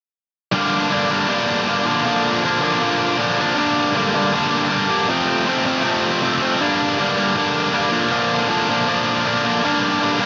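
Heavily compressed and radio-thin with a light reverb, this aggressive, angry punk fragment in G minor drives at 158 BPM in a straight 4/4 as a bright, tight, double-tracked electric guitar sits up front from 0.5 to 10.3 seconds, picking a distorted riff over Gm, Bb and F.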